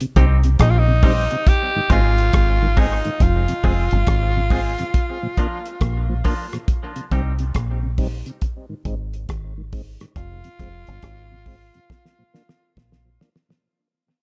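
A swung, damped drum kit with a fat snare and tight kick sits up front beside a deep, round, foam-muted fingered bass, setting an unhurried, meditative dub reggae groove that breaks down at 3.2 seconds and ends on a drum fill at 11.9 seconds under a fade-out. A raspy, gritty tenor saxophone carries the melody with vibrato and tape echo, while a twangy, compressed clean electric guitar with its own echo drops out at 7.3 seconds, and a mellow, lightly overdriven tonewheel organ turns slowly through a rotary speaker with chorus vibrato and echo. The small room and dark production keep the sound close and deep.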